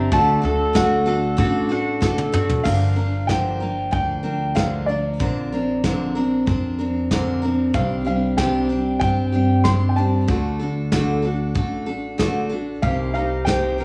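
Acoustic folk with a wistful, haunting mood, this short cut from a longer piece sets a woody upright piano melody over up-front picked steel-string guitar with audible finger squeak, a dark pizzicato upright bass and a soft brush drum kit whose fill at 2.0 seconds leads into the second section, while a double-strung mandolin's arpeggios appear only at the start and again from 12.8 seconds, the guitar and mandolin carrying a cassette-tape tint inside the light reverb and small-room ambience of a home recording.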